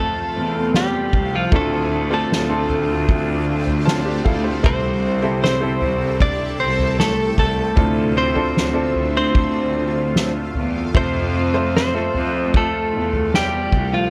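A clean, up-front electric guitar with slapback echo carries the melody over a woody upright piano, an ethereal shimmering pad with chorus and phaser, and an earthy bowed cello section on the bass, with a distant soft-mallet drum kit entering at 0.7 seconds and the piano adding a fill at 3.5 seconds in this melancholic, emotional pop ballad excerpt moving through F, Dm7 and Am7/C.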